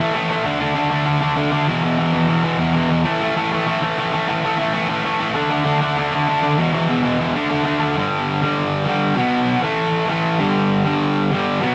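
In a straight 4/4 at 196 BPM, this rowdy, energetic punk excerpt features a lone sludgy, overdriven electric guitar, picked, double-tracked and up front, driving power chords from D5 through E5 and A5 before moving to G5, B5 and A5 at 8.0 seconds, all in a rough rehearsal-room sound with moderate studio reverb.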